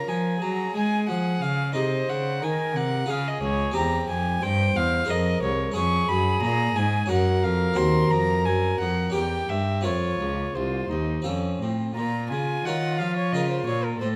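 A grave yet flowing baroque-style sonata movement in Bb minor at 89 BPM in 3/4 opens at once with an up-front gut-string violin carrying the melody in an airy, reedy voice, a darker, more distant second violin beneath it, a full harpsichord with two sets of strings supplying continuo accompaniment, and a close, rich cello bass, all heard together in a large studio's moderate reverb through detailed close microphones, as the chords move from Db through diminished harmonies to an F chord at 11.3 s before settling on Bb minor at 12.0 s in this fragment of a longer piece.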